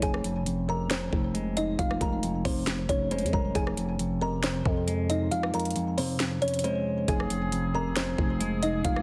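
Melancholic and eerie, this trap-flavoured hip hop excerpt moves at 136 BPM in a half-time feel in F minor, led by a woody, hollow kalimba melody with a thumbnail pluck, softened by a low-pass filter and trailed by delay, over a clean, fingered electric guitar accompaniment, a growling, buzzy 808-style bass and an up-front trap kit with a knocking kick, sharp snare, metallic hats and rim clicks. The kick drops out from 5.3 to 7.1 seconds, and at 7.1 seconds a woodwind section enters with sustained chords carrying light vibrato and a smooth top. The mix sits in a moderate recital-hall reverb with a heavily compressed, radio-like sound.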